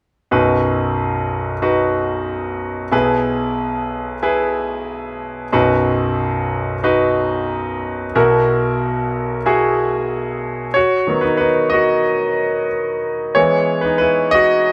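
Set in a live room with a wet studio reverb, this hopeful, anthemic pop excerpt features a brilliant, intimate concert grand piano played up front with audible action noise, deep bass and long sustain, moving between B, E/B and F#7/B chords before taking a solo turn at 10.8 seconds that settles on B and E.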